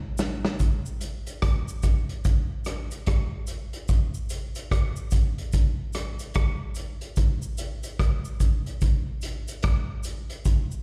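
A short drum fill opens this laid-back reggae cut at 73 BPM with swung sixteenths, as a vintage acoustic kit of hi-hat, punchy kick, rim click and medium-tuned snare sits up front with a rolled-off top and a pumping small-room sound, while a close, dry cabasa with a slapback echo stays in the background until about 10.8 seconds, all heard as a live gig through the venue's PA.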